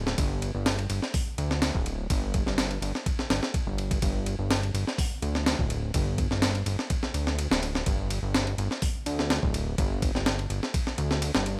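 A digital haze of vinyl crackle hangs over this 11.6-second cut from a longer breakbeat track, which moves at 125 BPM in 4/4 with a light 16th-note swing and a swaggering, energetic mood. A gritty, compressed, pitched-up sampler-style breakbeat kit sits up front in a small room ambience from 0.1 seconds, with a thumpy kick, medium-tuned snare, hi-hat and ride cymbal. Beneath it from 0.0 seconds, a fat analog bass blends detuned, wave-folded sawtooth and triangle tones, with a fast attack, sustained notes and a filter sweep, also placed up front.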